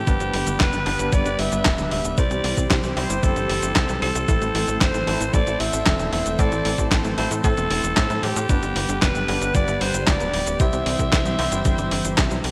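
A straight 4/4 pulse at 114 BPM comes from an overdriven, thumpy electronic kick and an up-front, tape-warm sampler-style kit of snare, hi-hat, handclaps and cabasa in gated reverb, anchoring this bittersweet, melodramatic italo disco excerpt in A minor, tuned to A4 = 436 Hz, where a tight, punchy sawtooth sequencer bass sits under a lush, detuned unison pad with chorus, barky tine electric piano stabs with fast tremolo hover in the background, and a raspy, present alto saxophone with scooped notes carries the melody through digital delay over a G, C and A minor progression, framed by light reverb and bright 1980s-style digital production.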